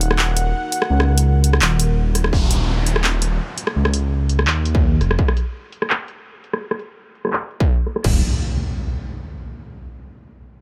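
A tense, cinematic half-time drum and bass passage at 168 BPM in Eb minor opens on a dark, detuned saw bass with rumbling tube-saturated grit, an overdriven, up-front kit of bright hats, handclaps, rim clicks and crash cymbal, and a moody, chorused analog pad pumping under sidechain, before a distorted electronic kick punches in at 2.3 seconds with a downlifter and impact while a filter sweeps the drums, the effects returning at 8.0 seconds as the harmony settles on Ebsus2, in a dry, close mix.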